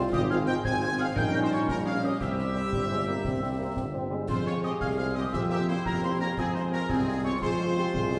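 In a straight 6/8 lilt, this stern, martial wind-band march excerpt sets a clear, distant trumpet section on the melody. Around it, a euphonium with light vibrato, a woodwind section in the background, and a pure, wooden-toned piccolo carry second lines, while a very quiet trombone section holds sustained chords and a French horn section adds tight accompaniment from 0.3 seconds. An up-front tuba anchors the bass, and close concert snare, bass drum and dark clash cymbals drive the beat from 0.1 seconds, all within the roomy reverb of a church or concert hall.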